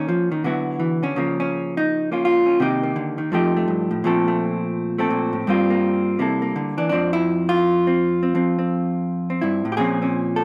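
A vintage hollow-body electric jazz guitar carries this short solo jazz passage by itself, its clean, picked tone dark and sitting up front in the sound. The mood is relaxed and warm, with a swung eighth-note feel in 4/4 that keeps the phrasing loose and easy. The guitar moves through a rich run of extended chords, from D69 and Db6 through Cm7, F9 and Bbsus2, then Gm7 and C13 settling onto Fmaj7 at 6.9 seconds. Its range stretches from a low F2 up to Bb4, giving the voicings a full, rounded body. A light reverb adds a touch of air around the instrument. Cut from a longer piece, the passage ends on a Bbm9 at 9.8 seconds, leaving the harmony open.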